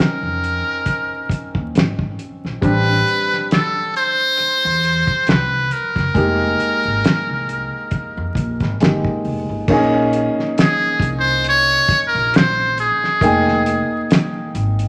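Vinyl crackle and a large, wet studio reverb wrap this late-night neo-soul R&B excerpt in a soulful glow. A metal-muted trumpet sings the lead up front, buzzy and breathy with a light vibrato, over an intimate upright piano whose action noise and long sustain colour the minor eleventh chords. A cloth-damped, thuddy drum kit with a fat snare and dark cymbals sits dry and close, while a pizzicato upright bass on gut strings adds a woody thump from 0.2 s, and the music shifts into a new section at 9.7 s.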